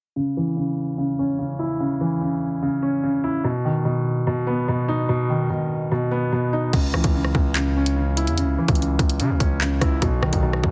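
Cold and ominous, this half-time drill cut opens on a dark, mellow grand piano muffled by a low-pass filter sweep over C# minor and B chords, until at 6.7 seconds an electronic drum kit with a hard-clipped kick, bright hats, handclaps, rim clicks and crash enters together with a distorted, saturated 808-style bass with a noise layer, all pressed into a dry, heavily compressed radio sound.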